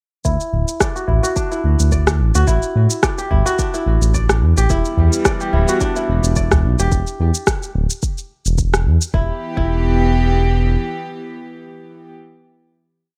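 A smooth, mellow synth bass with a pumping pulse anchors this hypnotic, mystical organic downtempo piece, where a crisp, ringing kora repeats a fingerpicked arpeggio pattern through a low-pass filter sweep and digital delay, while an up-front electronic shaker and rim click, a deep soft electronic kick and a very quiet udu drive the swung groove, the udu dropping out around 6.6 seconds and the shaker and rim click around 9.1 seconds, and a floating, bowed string section enters at 4.7 seconds to carry the final chord in a rough, reverberant demo mix.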